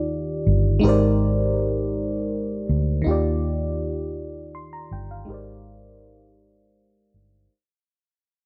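Slow, sensual six-eight R&B at 54 BPM, this tender passage is cut from a longer piece and alternates Ebmaj9 and Abmaj9#11 chords. A glassy FM electric piano with a bell-like attack and a shimmer of chorus sits up front beside a dark, round, foam-muted fingered electric bass. The dry, close 1970s-style studio sound is softened by a low-pass filter, with a filter sweep and a fade-out running through the full 7.5 seconds.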